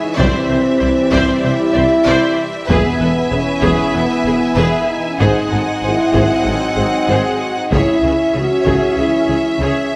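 A dark, distant French horn section opens alongside a violin section carrying the melody between E5 and F#5, while a broader string section and tight trombones with light vibrato hold sustained chords, setting a majestic, triumphant tone for this epic orchestral film-score excerpt in E major at 96 BPM in straight 4/4. At 0.2 s a second violin line enters in the background, joined by lush, bowed violas in accompaniment and a low end of mellow, very quiet tuba with a soft attack, a studio double bass section and a very quiet cello section. A vintage, band-limited taiko ensemble played with hard sticks drives from behind the orchestra, and timpani with hard mallets on calf heads sound an articulate E2 between 2.7 and 3.6 s. The harmony moves from Cadd9 to E, then G#7 and C#m, with the roomy horns standing out as the most prominent voice. A moderate scoring stage reverb lends the whole a grand, cinematic space, and the passage is cut from a longer piece.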